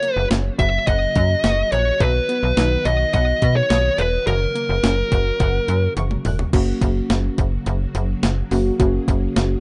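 Synth-pop at 106 BPM in F# major, upbeat and nostalgic, cut from a longer piece, where an up-front dark fuzz lead guitar carries the melody until 5.9 seconds over a snappy, metallic slap-like FM bass, thumpy overdriven 12-bit drum machine beats with a fill at 6.0 seconds, a bright, phased string-machine viola pad and a detuned analog pluck arpeggio with chorus and tape echo in the background, before muted, felt-like synth keys with chorus enter with accompaniment at 6.5 seconds, all in a rough home-demo mix with light reverb.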